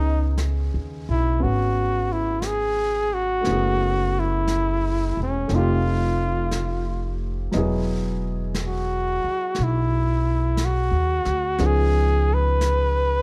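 A jazz ballad with an intimate, wistful mood and a gentle swing, cut from a longer piece and captured in a dark production with little reverb. A clear, up-front flugelhorn carries the melody with jazz vibrato over warm grand piano chords and a woody, growly pizzicato upright bass, while a brushed drum kit with an airy small-room sound joins at 0.4 seconds, sitting low in the mix. The harmony drifts through rich extended chords such as F#m11, F9 and Emaj9 before settling on C#7.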